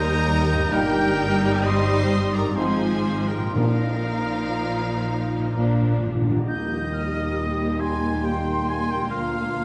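A lyrical, serene classical passage in 3/4 opens in Eb major at an unhurried, rubato 57-71 BPM, with a clear violin section singing the melody while a bright flute group, a close-miked solo oboe and a background violin section weave second lines over a rich viola accompaniment, ringing, very quiet harp arpeggios, and bowed cellos with portamento joined by focused double basses. From 0.7 seconds mellow, distant French horns and trombones with a smooth top sustain chords in the background, and dry, articulate timpani struck with hard mallets enter at 3.6 seconds, playing a fill from 5.6 seconds before the music settles back onto Eb at 6.5 seconds. The whole ensemble sits in a stone room reverb, and the recording is cut from a longer piece.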